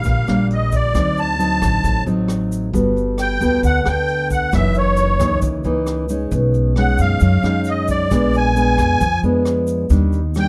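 A reedy, shimmering musette accordion in wet musette tuning carries the melody up front from the first moment, airy with plate reverb, over fingerpicked classical nylon-string guitar, woody pizzicato upright bass and a grainy, bright tube shaker sitting close and dry in the background. A brushed jazz drum kit joins at 0.1 seconds with hi-hat, rim click and a boomy kick, placed back in a natural studio room, as the harmony moves from Ebmaj7 through D7b9, Gmaj9, Gb13, B69 and Bb7b9 before returning to Ebmaj7. This relaxed, sophisticated bossa nova, cut from a longer piece, moves at 134 BPM in a straight 4/4 with a dark, warm production and light reverb.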